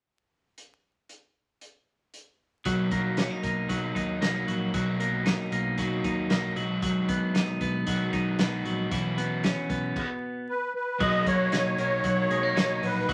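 A bright, twangy twelve-string electric guitar sits up front with compressed, picked arpeggios in this nostalgic jangly indie pop excerpt in B major at 115 BPM, moving through Bmaj7, G#m7/B and F#7sus4/B. A loose, small-room acoustic drum kit opens alone at 0.6 seconds with its tight kick and medium-tuned snare. At 2.7 seconds a crunchy overdriven guitar and a round, punchy foam-muted bass join, and during a brief stop a reedy, shimmering musette accordion takes the melody at 10.5 seconds, all under moderate reverb and a layer of vinyl crackle.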